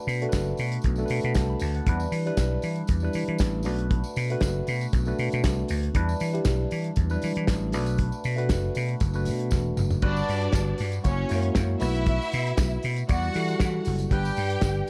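A tine electric piano opens this driving, glamorous disco excerpt at 118 BPM in a straight 4/4. Its clean, up-front tone runs through a combo amp and is coloured by a phaser as it moves between Bm7 and Em7. Almost at once a vintage slap bass joins with a growly, punchy, amped sound sitting up front, alongside a smooth acoustic soul drum kit heard in a small room, with a tight kick, a medium-tuned snare, dark cymbals, hi-hat and toms. A jingly tambourine, miked close, stays in the background. A drum fill at 9.5 seconds leads into a new passage at 10.0 seconds, where the harmony shifts through Gmaj7, F#7, B7sus4 and Em9 before landing on G, and a lush studio violin section enters as a second line, bowed as an ensemble with expressive vibrato. Studio reverb gives the production a dark, warm glow.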